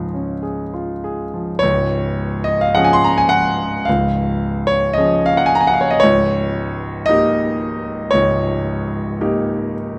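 A clear concert grand piano opens the recording alone, playing a dreamy, nostalgic Romantic nocturne in D-flat major at a slow 49-58 BPM in 4/4 with a free, rubato feel. Its smooth, vintage tone sits up front, reaching from deep bass notes in the low register to clear tones in the upper range, with the harmony moving from Db to Eb7/Db at 6.0 seconds. Close, detailed miking captures the instrument within a moderate recital hall reverb, a faint mains hum lies beneath, and the passage is cut from a longer piece.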